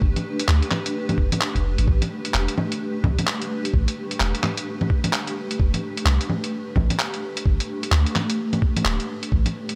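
Future garage with a wistful, rainy mood, cut from a longer piece and set to a swung 4/4 groove. A cloudy, detuned granular pad holds blurred, evolving chords moving from G9 through A9sus4 and Fadd9 to Gadd9, while a soft, round 808-style bass with tube saturation sits deep beneath, both pumping against the sidechain. A muffled, thumpy electronic kick anchors the beat, and an up-front lo-fi sampler kit of bongos, handclaps and hi-hat enters at 0.2 s, both drum parts compressed and re-recorded in a large room under light reverb.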